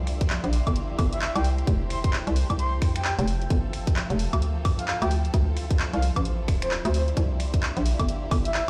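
A hollow, knocking FM bass sits up front in this sunny, soulful two-step UK garage excerpt at 131 BPM, its bouncy, fast-decaying notes pumping against the sidechain alongside a tight, tape-touched electronic kick, while a dry analog drum machine scatters snaps, handclaps, hi-hat and woodblock over a swung 16th feel. From 1.1 seconds a breathy, flute-like synth lead with soft attack, vibrato, chorus and delay carries the melody, floating over a lush bowed violin section in the background and a blurred, evolving granular pad with its own reverb, both also pumping. The chords move from C7 through Fmaj9, Gm11 and Dm9 back to C7, all heard through the large, reverberant air of a big sound system in a bare room.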